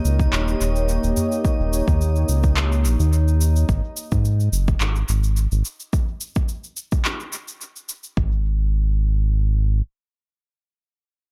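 Warm and earthy, this short cut from a longer organic downtempo piece moves in a gently swung 4/4. It opens on a D#7 chord held by a smooth, detuned sawtooth pad with a soft attack, chorus, a moving notch and sidechain pumping, while a calm, glassy texture of drifting sine overtones floats above it with a slow attack, long release, chorus and its own reverb. Both fall away at 3.7 seconds, while the up-front, round, dark analog bass that has played from the start, blending sawtooth, sine and triangle tones with a fast attack, carries on until about 9.8 seconds. An overdriven, deep electronic kick sits up front alongside layered, overdriven electronic cabasa and handclaps with analog delay, all re-recorded in a large room, until the beat stops around 8.3 seconds. A brief deep, close and dry udu sound lands at 1.2 seconds, and the whole mix is echo-heavy with a light reverb.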